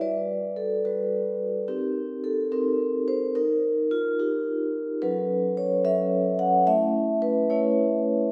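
A wet recital hall reverb with a 1.4-second decay surrounds a single vibraphone, which sits up front in the sound. This short excerpt, cut from a longer contemporary classical piece for solo vibraphone, has a flowing, hypnotic mood in a straight 6/8 metre, with the instrument tuned slightly below standard pitch at A4 = 438 Hz. Struck with soft mallets, the vibraphone has a mellow, ringing, metallic tone with an airy quality and a slow motor vibrato. Across its range from F#3 to F#5, the harmony moves through Gmaj7, Cm7, D#, F#m7 and A. The vibraphone plays alone for the full 8.3 seconds.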